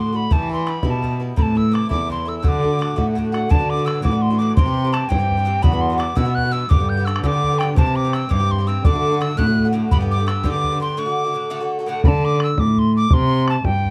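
Celtic folk jig in 6/8 at 112 BPM in D mixolydian, lively and rollicking, with a mellow, airy tin whistle carrying the expressive melody with vibrato and a soft attack while an Irish bouzouki picks metallic double-string accompaniment. A rich, biting cello bowed by a single player sits up front as the earthy bass, and a boomy, vintage-sounding bodhran enters at 0.3 seconds to drive the dance. After a break from 11.0 to 12.0 seconds the bouzouki drops out, leaving whistle, cello and drum to close this excerpt in a dark, warm small-room ambience.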